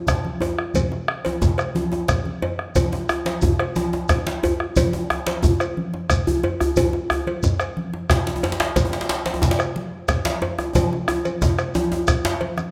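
From 0.1 s, a festive, driving West African drum ensemble sets off together in a straight 12/8 at 120 BPM: a round bombo sounds close while a metallic cowbell rings close by. Up front, a medium-tuned djembe with metal rattles is struck with hard hands, a second djembe sits in the background, thick-skinned congas resonate in a live room, and a grainy, mellow shekere adds texture from a smaller space. A moderate recital-hall reverb surrounds the group, and a drum fill arrives at 10.8 s before this cut from a longer piece ends.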